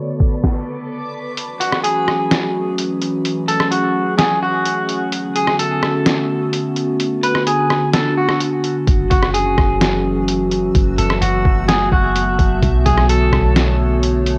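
Atmospheric cloud-rap hip hop at 128 BPM in a half-time feel, this F# minor excerpt drifts in a spacious, hazy mood over chords of Bm9 and F#m7. A warbling, nostalgic pad built from square and triangle tones holds sustained chords up front throughout, with chorus, built-in reverb, sidechain pumping and a cassette tape character. A reversed, dreamy texture appears during the opening 1.4 seconds and returns from 10.1 s, while a muffled, pitched-down sampler-style drum kit with hi-hat, rim click and a medium-tuned snare sits forward in the mix. A filter sweep and a stop mark the opening, and the thumpy kick drops out at 1.4 s and returns at 8.9 s, when a deep, round, sine-like 808-style bass also arrives. A clean, twangy electric guitar carries a fingered melody from 1.6 s, softened by a low-pass filter and tape echo. The home cassette recording has light digital ambience and a dark, rolled-off top end.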